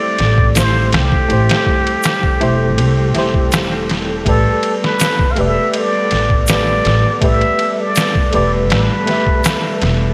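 Built on a straight 4/4 groove at 81 BPM, this smoky, hypnotic trip hop excerpt rides a sampler-style drum kit that sits up front, with a thumpy kick, a medium-tuned snare and ride cymbal, all pitched down, compressed and gritty under gated reverb. A woody pizzicato upright bass enters at 0.2 seconds, its steel strings thickened by tube saturation, while a tube shaker and group handclap stay close, dry and in the background. A reedy, worn electric piano, slightly out of tune, comps through fast and harmonic tremolo with vintage 12-bit sampler grit, moving from Am7 to Gadd9 at 4.3 seconds. Beneath it, a warbling, nostalgic pad of detuned square and triangle tones with a sub octave swells in slowly, chorused and dark, and a very quiet flickering granular texture hovers on a single A. Over the top, a breathy, whispered trumpet with plunger mute sings an intimate jazz-style melody full of wah-wah and vibrato, trailed by dub echo, all set in a lush hall reverb with bright 1980s-style digital sheen.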